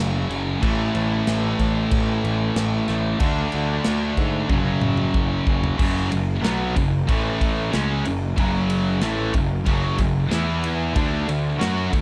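A growly, fuzz-laden picked bass sits up front in this epic, heavy metal excerpt in F# minor at 93 BPM, driving alongside three guitar riffs (a bright, double-tracked overdriven guitar, a scooped high-gain guitar with distortion, and a sludgy, dark overdriven guitar in the background) over power chords from F#5 through A5, D5 and E5, while a polished, punchy acoustic drum kit with crash, ride, snare and toms joins at 0.3 seconds and plays a fill from 4.5 to 5.8 seconds, all in a dry, dark production.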